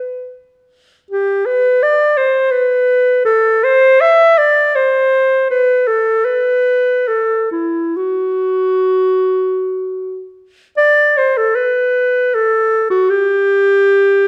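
Yearning and lonely, this classical fragment, cut from a longer piece, features a mellow clarinet playing alone with a soft attack, set up front in a recital hall's moderate reverb. The tempo drifts freely between 51 and 86 BPM in a rubato 3/4, the line ranging from E4 to E5 with tuning at A4 = 444 Hz. A new section begins at 10.8 seconds and carries the brief passage to its close at 14.3 seconds.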